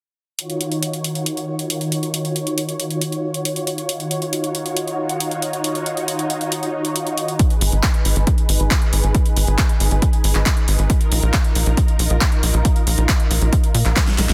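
Driving and emotional, this uplifting trance excerpt opens with a silky, nasal analog string pad holding sustained chords through a filter sweep and sidechain pumping, beside a layered big-room kit of handclaps, a huge snare and pumping metallic hi-hats, before a dry, punchy electronic kick arrives at 7.4 seconds and a tight sawtooth sequencer bass sits up front from 7.6 seconds, all leading to a drum fill at 14.0 seconds in a dense, heavily limited mix with light reverb.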